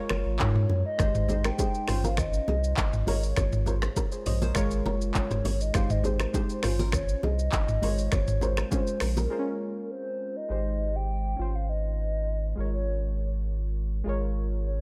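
An afrobeats excerpt at 101 BPM with a romantic, joyful mood, where round analog keys with chorus and a deep sine sub bass support a hollow, woody clarinet-like synth lead with tape echo and vibrato, while an electronic drum kit with a deep kick and metallic hats, very quiet bright bongos and congas, and a fingerpicked flamenco guitar in the background all drop out at 9.3 s, leaving keys, bass and lead over chords like Gbmaj7, Abmaj7 and Dbmaj7/Ab.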